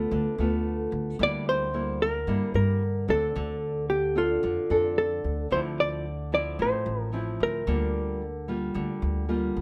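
Wistful and melancholic, this short bossa nova fragment in D minor moves at 111 BPM with a straight feel in 4/4, cut from a longer piece. A clean, dark hollow-body jazz guitar carries the melody up front, its fingered, compressed tone bathed in plate reverb until it stops at 9.0 seconds. Beneath it, a small-sounding nylon-string guitar provides thumb-plucked accompaniment, with audible finger squeak adding intimacy. An upright bass played pizzicato on gut strings gives a woody, thumpy foundation. The harmony drifts through Dm6, C9/D, Dm7, Dm9 and Gm7/D over a steady D, all set in a light reverb that keeps the trio close and present.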